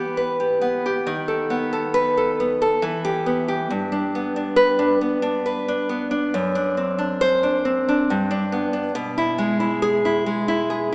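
A rubato 3/4 feel at 68 BPM carries this nostalgic, tender romantic piece for solo classical guitar, cut from a longer work, where an up-front, warm, fingerpicked nylon-string guitar moves through Em, B7/D#, G and D7/F# before landing on E/B at 8.9 s, tuned to A4 = 441 Hz and bathed in a wet church reverb that lingers about 2.7 s, with a small-speaker sound.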